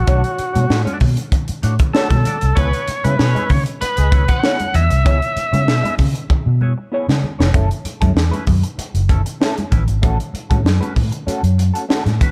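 Driving and sly, this excerpt of straight 96 BPM funk in F# minor opens with a gritty, overdriven tonewheel organ melody with key click and percussion that drops out at 6.0 seconds, over a round, foam-muted fingered bass, a dark, wah-treated electric guitar, a crisp fusion kit with high-tuned snare in a pumping small room, and very quiet bright congas, while a distant horn section adds a brief second line from 2.6 seconds, and a drum fill at 6.3 seconds carries the dark, dry production from Bm9 and C#m7 into F#m7 and A6.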